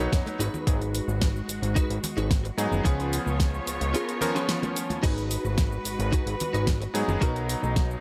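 Lightly reverberant and echo-heavy, this sleek, cosmic nu-disco excerpt rests on an up-front, overdriven electronic kick and a fat, saturated sawtooth analog bass that pumps with the pulse alongside a clear, vintage electric grand piano that also pumps and carries analog delay. Muted strings played con sordino hold dark, veiled chords, while a bright, direct-recorded clean guitar riff shimmers with chorus and delay until 7.6 seconds. A layered pop kit with a fat snare, hi-hat, crash and cabasa and ringing, dry congas in the background fill out the groove over a G#m7, C#7 and Bmaj7 progression.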